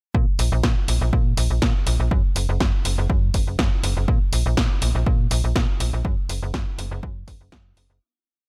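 Filtered disco house with a sensual, nostalgic swing, built on a snappy FM bass with a metallic attack that jumps octaves through a low-pass filter and sidechain pumping, an up-front, tape-warm four-on-the-floor electronic kick, and a punchy analog drum machine supplying open hats and a backbeat snare, all set in digital ambience before a fade-out from 5.4 seconds to the close at 8.0.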